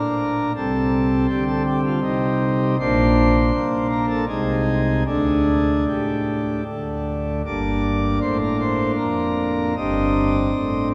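A solo pipe organ on a full principal chorus with romantic voicing sits up front in this dark, grave classical chorale excerpt in 3/4, moving with rubato through shifting minor and major harmonies from a low G1 up to Eb5 and blooming into a long, wet cathedral reverb before it is cut off at 10.9 seconds.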